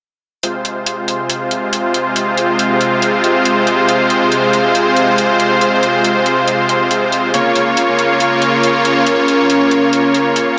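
Heavy wobble dubstep in F minor, this excerpt moves at 139 BPM in 4/4 with a half-time feel that makes it menacing and chaotic. Huge, lush supersaw chords enter at 0.4 seconds, bright and up front, their detuned sawtooth unison sustaining across the whole stretch. An electronic hi-hat starts at the same moment, its layered, metallic, tape-warm hats running until 10.4 seconds. At 2.0 seconds a deep, moody ambient pad slides in behind them, a dark, warbling vintage texture with a sub octave, slow attack and long release, carrying chorus and its own built-in reverb as it sits in the background. The harmony rests on Fm before shifting to Bbm at 7.3 seconds, and the whole passage carries light reverb and a small-speaker character.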